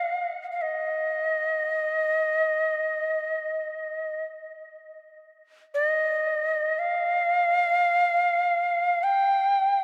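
In free time, this peaceful, spacious world meditation piece, cut from a longer work, features a solo Native American-style cedar flute playing up front for about 9.8 seconds, with a woody, airy tone, vibrato and a crisp, chiffy attack, softened by rolled-off highs and carried on tape echo into a huge, wet ambient reverb.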